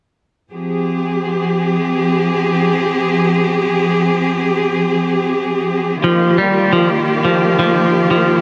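In free time, this dark, spacious drum and bass fragment opens at 0.5 seconds with a lush, bowed cello section holding sustained chords up front, its soft attack and expressive vibrato giving a symphonic ensemble sound. At 6.0 seconds, as the harmony shifts, a bright, twangy clean electric guitar enters with picked arpeggios, compressed and carried on tape echo. Both play on to 8.4 seconds inside a huge, wet ambient reverb.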